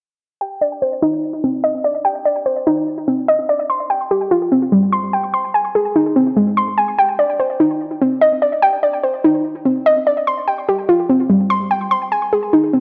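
A hollow, detuned square-wave synth pluck sits up front, playing dark, bouncy arpeggios through chorus, tape echo and a filter sweep from 0.4 to 12.8 seconds, carrying this tense, ominous half-time hip hop fragment over a Cmadd9, G7sus4 and Ab progression, set in a lush hall reverb with a gritty cassette-tape character.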